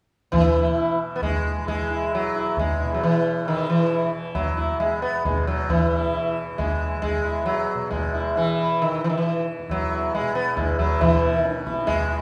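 Meditative and devotional, this short Hindustani classical passage in raga hamsadhwani, centered on E and tuned to A4 = 442 Hz, moves at 135 BPM in a straight 3/4, and it is cut from a longer piece. The sitar carries the melody up front between D#3 and E4, its plectrum-plucked tone mellow and round, with a buzzing edge and a shimmer from its sympathetic strings. Beneath it the tanpura sounds its softly plucked drone from E2 to E3, bright and buzzing, sitting well back in the balance. The low-tuned tabla rings out from a distance, as if placed in a large room, and falls silent at 12.0 seconds, just before the sitar and tanpura close together at 12.2 seconds. A generous recital hall reverb with a 1.7 second decay surrounds the performance, and a brief new section arrives at 11.0 seconds near the end.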